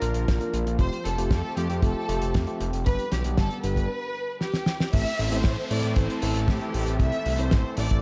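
A straight 4/4 groove at 116 BPM drives this danceable, bittersweet italo disco fragment in A minor: a dry, tight acoustic kick joins at 0.3 s beneath a damped 70s kit with a fat snare and dark cymbals. A thick, saturated, detuned sawtooth analog bass with a filter sweep sits up front, while a clean tine electric piano played through a combo amp adds stabs and a lush, warbling unison pad with chorus holds sustained chords in the background. A woody, bowed studio violin section with vibrato carries the melody through a delay over chords moving from Bb to Fadd9 and G. After a break at 3.9 s and a drum fill, the music settles on Am as an electronic downlifter enters in the background at 4.9 s, all within a small, lightly reverberant room and a dark production.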